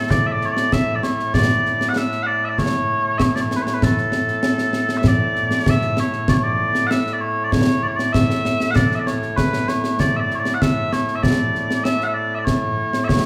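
Stirring and proud, this short passage of Scottish traditional pipe music is cut from a longer piece, with mellow small bagpipes carrying the melody up front in a sweet, continuous tone touched with vibrato. Close, acoustic concert snare and bass drums with dark cymbals sit up front beside the pipes from 0.1 seconds, and the whole performance rings in a wet recital-hall reverb, as if heard in a church or concert hall.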